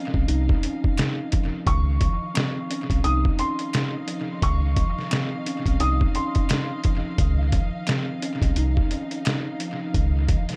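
Small room ambience and an echo-heavy mix shape this soulful excerpt of boom-bap hip-hop, which moves at 87 BPM in 4/4 with a swung sixteenth-note feel in Db major. Up front, a compressed, pitched-down sampler-style drum kit lays down a thumpy kick, a medium-tuned snare and hi-hat, all coloured by tape echo. A deep, full sine sub bass with an octave holds the low end. A mellow tine electric piano accompanies while a lush, bowed string section with vibrato sustains chords over a Dbmaj9 harmony, both shaped by filtering. From 1.7 to 7.1 seconds a woody, slightly detuned upright piano carries a high melody through tape echo, giving a vintage tint, while very quiet, dry finger snaps enter at 1.0 seconds to add a human accent.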